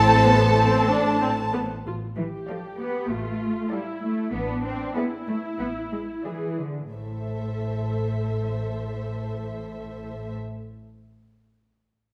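Stormy and urgent, this short cut from a quick classical-period movement for string orchestra unfolds in 4/4 with a rubato feel, slowing down between 0.6 and 6.9 seconds. All five sections play con sordino throughout, giving the whole ensemble a dark, veiled colour. The muted symphonic violins carry the melody up front, close and lush with vibrato and a soft attack, while a muted studio violin section shapes a smooth-topped second line beneath them. Close, lush violas fill in the accompaniment, and the bass is anchored by up-front cellos and a close double bass section holding its low A with light vibrato. The harmony moves from Am through Dm/A and E7/A before settling back on Am at 6.9 seconds, all wrapped in a wet recital hall reverb.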